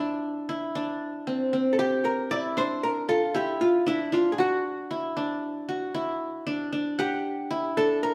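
A bright-edged, plectrum-plucked qanun opens alone with intricate arpeggios, its triple strings ringing up front in this driving progressive instrumental in 5/4 at 116 BPM, set in G dorian. At 1.7 seconds a dark, clean hollow-body archtop guitar enters with a picked melody, also close and forward, as the harmony settles on G5 and then shifts to Dadd9 around 4.4 seconds. The pair plays live together in a stone room whose reverb lends a lingering glow to this short cut from a longer piece.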